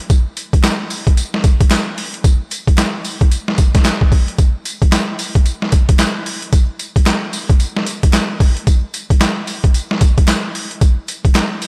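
A bouncy, flirty R&B groove swings its sixteenths over a steady 4/4, carried by an up-front, sampler-style boom bap kit that is pitched down, compressed and overdriven into a gritty sound, with a thumpy kick, a high-tuned snare, hi-hat, tambourine and handclaps. Behind it, a crisp, human group handclap with a small-room acoustic quality sits barely audible from 0.6 seconds, and light reverb rounds out this short cut from a longer piece.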